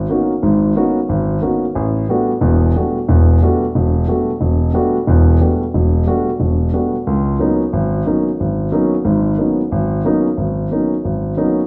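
A solo concert grand piano opens this short jazz excerpt, swinging at a brisk 181 BPM in 4/4 with a cool, searching mood in C# dorian. The piano sits up front with a warm tone and deep bass, ranging from E1 to F#4, and it plays alone for the full 11.6 seconds. Its harmony moves between suspended chords, C#13sus4 and A13sus4, shifting to A13sus4 at 1.8 seconds and returning to C#13sus4 at 7.1 seconds. A wet large-studio reverb surrounds the instrument, giving it the feel of a live performance in one room. The tuning sits slightly low, with A4 at 438 Hz, and the clip is cut from a longer piece.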